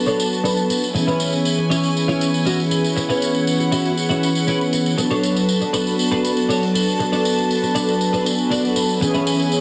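Nu-disco at 119 BPM in B dorian, groovy and sensual, moving between Bm7 and C#m7 through this short cut from a longer piece. Up-front, mellow synth brass carries the accompaniment with a round, detuned sawtooth tone under chorus and analog delay, while a distant, floating string section holds soft-edged bowed chords above it, and a bright, twangy twelve-string electric guitar picks a clean riff through ensemble chorus, a low-pass filter and delay. A dry tambourine with a rolled-off top keeps time, a filter sweep runs across the clean electric guitar, a guitar fill arrives at 8.0 seconds, and the mix sits in a wet echo-chamber reverb with a dense, heavily limited master.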